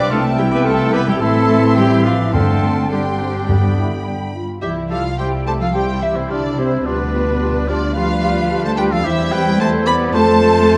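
A quick, restless and dramatic classical-period symphonic movement in C major at 108 BPM, cut from a longer piece, in which a lush, expressive violin section carries the melody over second lines from a pure, bright flute section, a clear clarinet, a warm solo oboe and a background violin section, while a dark bassoon and a smooth, distant viola section accompany, a French horn section holds sustained chords, rich double basses and vibrato-laden cellos anchor the bass, and close timpani sound from 2.3 to 4.3 s, set within a moderate scoring-stage reverb.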